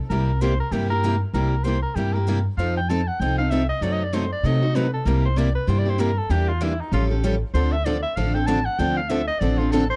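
Acoustic string swing in the jazz manouche style, this charming, lively excerpt moves at a brisk 193 BPM in C mixolydian, with a breathy, subtoned soprano saxophone taking a solo full of scooped notes and vintage jazz character over a progression from C7 through F7, F#dim7, Em7b5, Aaug7 and Dm7. Two picked steel-string acoustic guitars accompany, one with fresh strings and audible finger squeak, the other bright and boxy with a parlour tone. A woody, thumpy pizzicato upright bass sits up front, all captured in a dry, close 1970s-style studio recording with small room ambience.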